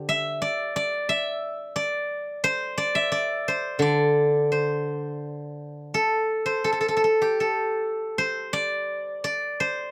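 Close, detailed microphones and a dry room put every string of this short recording in sharp focus, cut from a longer piece. It is a contemplative, elegant solo in the Chinese traditional style for plucked strings, moving with a free, rubato feel over a loose four-beat pulse. The only voice is an acoustic steel-string zither, played with fingerpicks and placed up front, its tone silvery and ringing as it ranges from D3 up to E5. The opening passage unfolds over the first 8.2 seconds, and a new section begins there and carries through to the cut at 9.9 seconds. The close sound keeps the attack of each plucked note clear and intimate, giving the fragment a poised, reflective character.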